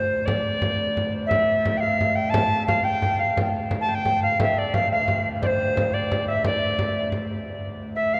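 A steady 6/8 pulse at 117 BPM counted in dotted quarters drives this short, mysterious medieval dance in D minor, tuned to A4 = 436 Hz and cut from a longer piece, with an up-front frame drum sounding from 0.3 to 7.3 seconds. A woody tenor recorder with a pure, straight tone and a soft, chiffy attack carries the melody between C5 and A5, while a thumb-plucked concert harp rings out a second line in the background. A rich, bowed viola da gamba floats beneath on a single low D drone with light vibrato, all bathed in a cavernous cathedral reverb lasting 5.3 seconds.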